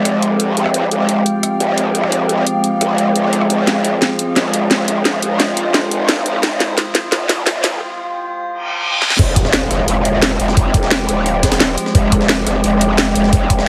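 A growling, aggressive bass sits up front in this dark technical drum and bass cut from a longer piece, its saturated, formant-filtered tone wobbling with chorus, overdrive and sidechain pumping under a tense, mechanical mood at 174 BPM in F minor. Around it, an eerie FM drone with a metallic, inharmonic edge holds sustained chords over an Fmadd9 harmony, while an ethereal, airy pad of detuned sawtooth and triangle voices with a noise layer drifts through ensemble chorus and phaser. The drum and bass kit plays up front almost throughout, with a cracking snare, bright hats, rim clicks and crash, and a filter sweep carries the build-up, with drum fills and a short break before a reverse cymbal leads into the drop at 9.2 seconds. There an electronic knocking kick joins, along with a very quiet, gritty breakbeat kit with a high-tuned snare, while a faint riser and impact mark the transition. 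The mix is heavily compressed with a radio-like thinness, set in a moderate lush hall reverb.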